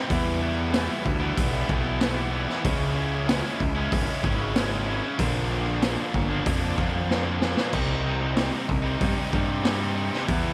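Angsty and brooding, this short cut from a longer quiet-loud alternative rock piece moves in a straight 4/4 feel through a chord sequence of Em, C#m, Bb and Cm. Two picked electric guitars carry the riff together: a bright, high-gain distorted guitar sits up front, while a thick fuzz guitar rides in the background. An overdriven, fuzzy picked bass, recorded direct and amped, holds the low end up front with a warm tone. The raw garage drum kit sounds small-room and gritty, with a boomy kick, a medium-tuned snare, hi-hat and crash cymbal, its saturated character and rolled-off top keeping it warm and mid-forward. A drum fill from 7.1 to 7.7 seconds leads into the final Cm chord, and a light reverb gives the whole band a bit of air.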